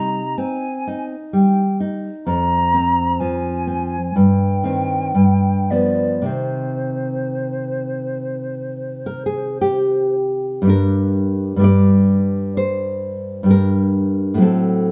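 A moderate stone-room reverb surrounds this live duo, a short cut from a longer romantic piece for flute and classical guitar with a melancholic, elegiac mood. The nylon-string guitar sits up front, its dark, full-bodied fingerpicked accompaniment spanning from deep bass notes into the upper register. The silver concert flute sounds more distant and mellow, carrying the melody with a pure, hollow tone, vibrato and a crisp attack. Both players move in free rubato over a slow pulse, the harmony travelling from C minor through F minor and a G7 back to C minor before turning toward G minor. The flute falls silent at 10.1 seconds, and from 10.7 seconds the guitar carries a new section alone.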